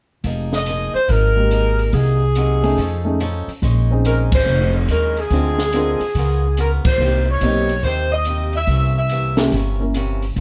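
Big band swing jazz in F minor moves at 142 BPM with a sultry, swinging mood in this short cut from a longer piece. Upright bass, an open jazz drum kit and a picked swing-style acoustic guitar all start at 0.2 seconds. The bass is woody and thumpy with gut strings and sits up front, the drums bring dark cymbals, a high-tuned snare and a boomy kick, and the guitar adds a bright, boxy picked layer at a lower level. A saxophone section carries the melody from 0.5 seconds with light vibrato and a soft attack, sounding roomy yet up front. A grand piano joins at 1.4 seconds with an intimate, natural tone and audible action noise. The harmony moves through rich minor and altered chords such as Fm11, F7alt and C7b9, the band hits accents at 4.3 and 6.8 seconds, and a light reverb gives the room a gentle sense of space.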